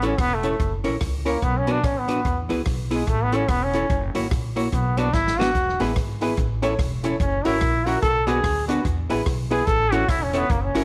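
Set in a lightly reverberant studio, this cheerful, joyful ska excerpt swings at 146 BPM in E mixolydian, with a brilliant, vintage-toned trombone soloing up front with light vibrato over a dark, clean hollow-body jazz guitar bathed in tape echo, a woody, thumpy pizzicato upright bass, and a polished, airy big-band drum kit with a punchy kick that plays a fill at 5.1 seconds before a worn, slightly detuned upright piano adds boxy background stabs from 5.8 seconds.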